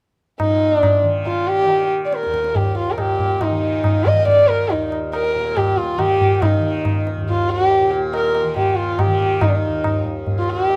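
In a straight seven-beat cycle, this devotional, radiant Hindustani classical excerpt sets a dark, nasal, woody bowed sarangi up front with light vibrato, gliding portamento and sympathetic strings over a softly plucked, buzzing, shimmering tanpura drone and low-tuned, ringing tabla heard close and dry, the three parts sounding together from 0.4 to 10.8 seconds in a modest booth ambience.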